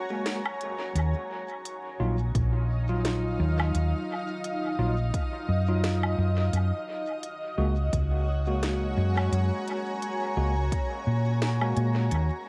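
A round, dark hollow-body electric bass sits up front in this deep, spacious ambient dub excerpt in Eb minor at 86 BPM, entering at 1.0 seconds beneath a cloudy, evolving granular pad of sustained chords with its own reverb and clean tine electric piano stabs soaked in dub echo. An organic electronic drum kit of woody snare, crisp hats and woodblock also carries dub echo, while a tape-warm electronic kick arrives at 2.3 seconds and drops out at 10.9 seconds. Light digital ambience, vinyl crackle and an echo-heavy mix frame the chords as they move from Gbadd9 to Ebmadd9 and back.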